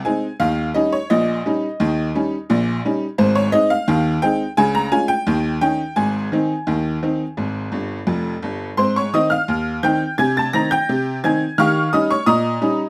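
A metallic, jangly tack piano plays alone, up front with light reverb and close, detailed miking, in this cheerful, jaunty ragtime snippet in straight 2/4, cut from a longer piece, where the same section comes around twice and a honky-tonk fill at 7.7 seconds leads into the repeat.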